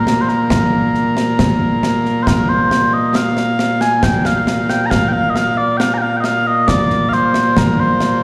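Scottish traditional pipe music in triple metre, this brief fragment of a longer piece carries a ceremonial, stirring mood. Mellow small bagpipes carry the melody up front, their sweet, continuous tone touched by a slapback echo, while concert snare and bass drum, close and dry with dark cymbals, join at 0.1 seconds and sit lower beneath them. Heard live through a venue's PA, the performance is wrapped in a moderate club reverb and a recital hall ambience, with the tune moving into a new section at 2.3 seconds.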